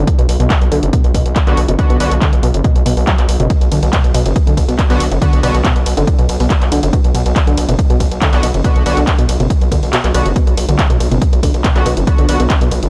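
Driving, dark peak-time techno at 140 BPM in 4/4 with a straight feel, sitting on B minor in this short cut from a longer piece. A punchy electronic kick and an analog drum machine of handclaps, hi-hat and ride cymbal, both re-recorded in a large room, carry the groove from the start, with sidechain pumping on the hats and cymbals. Up front, a gritty, aggressive synth bass built from square and sawtooth oscillators with sync and distortion holds the low end between F#1 and B1 under sidechain pumping. In the background, a warbling, lo-fi pluck with a noise layer, ring modulation and a filter sweep plays a riff between B2 and F#3 through chorus, overdrive, pumping and analog delay. A bright, edgy polysynth with a nasal oscillator-sync sweep and detuned sawtooths stabs in briefly at 1.5 and 4.9 seconds, then holds from 8.3 seconds, and the kick drops out between 9.9 and 10.4 seconds. The dry hardware recording carries only light reverb and digital ambience, keeping the mix gritty and loud.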